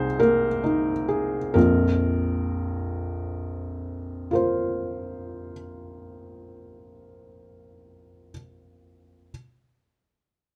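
In a rubato 6/8 that slows over the first 1.6 seconds, this reflective, wistful piece of neoclassical minimalist piano is a short excerpt cut from a longer work. A felt-muted upright piano plays solo, soft and mellow with audible action noise, sitting intimately up front and ranging from Bb1 to C5 as it moves from an Abadd9/C chord to Bbsus2 at 1.6 seconds. Light reverb and a dark production surround its natural tone.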